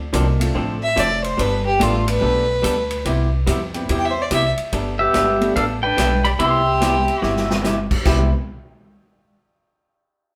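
Swinging in 4/4 at 144 BPM, this playful, down-home western swing piece in C major rides on a thumpy gut-string upright bass and a big-room drum kit with a punchy kick, while a dark, clean hollow-body jazz guitar and a slightly detuned upright piano fill in the chords; a woody bowed fiddle with light vibrato and portamento enters at 0.8 s to carry a solo, an up-front pedal steel guitar with slide and volume swells takes the melody from 5.0 s, and a drum fill arrives at 7.2 s, with the band playing live together in one reverberant room.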